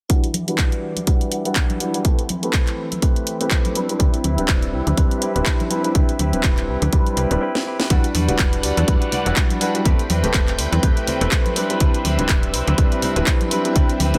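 This feel-good, funky cut of filtered disco house at 123 BPM in D mixolydian opens with a punchy, up-front electronic kick, a tape-toned house kit with a cracking snare, handclaps and pumping hi-hat, and ringing tambourine and congas in the background. Open, long-sustaining baby grand piano chords and a swirling, bright string machine with ensemble chorus and phaser pump beneath a filter sweep that runs until 7.9 seconds. At 4.0 seconds a snappy FM bass with a metallic attack and a clean, direct-recorded guitar riff with vintage 12-bit sampler grit join in, and after a brief break and drum fill the second section cycles again through Em9, Am9/E and D13sus4 in light reverb.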